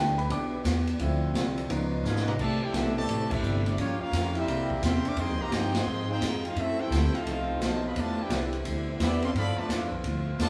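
Joyful and swinging, this short big band excerpt moves at 172 BPM in C major with a firm swing feel. A bright, brilliant concert grand piano with deep bass carries the opening, joined quietly by a dark, clean hollow-body jazz guitar, very quiet saxophones holding clear, soft-edged chords, and a woody pizzicato upright bass placed up front, while a distant, roomy drum kit with dark cymbals and a boomy kick comes in at 0.2 seconds. The piano stops at 2.2 seconds as a drum fill leads into the next passage. Entering just before that passage begins, a close-miked, tight trumpet section with light vibrato takes the melody, and a warm, soft-attacked trombone section adds a second line in the background. The full band hits accents at 3.3 and 5.7 seconds over rich, shifting jazz harmony built on chords like C69, Fm9 and G13. A generous studio reverb gives the sense of a whole band playing live together in one large room.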